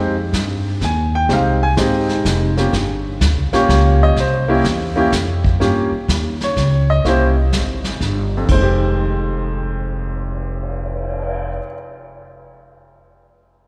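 A clear, intimate baby grand piano carries the melody up front, ranging from F2 to Ab5, with the soft noise of its action audible beneath the notes. This is a swinging, smoky jazz piano trio fragment in F minor, moving in 3/4 at 125 BPM with a lilting swung eighth-note feel. A woody pizzicato upright bass sits close alongside the piano in the low register, while a vintage brush drum kit enters at 0.3 seconds with dark cymbals, a medium-tuned snare, a punchy kick and a rolled-off top, set a little behind the other two. The harmony opens on Fm9, passes through Gm7b5 and C7b9 to sparer fifths, and returns to Fm9 at 8.5 seconds. A moderate cathedral reverb gives the trio the long, resonant air of a church or concert hall.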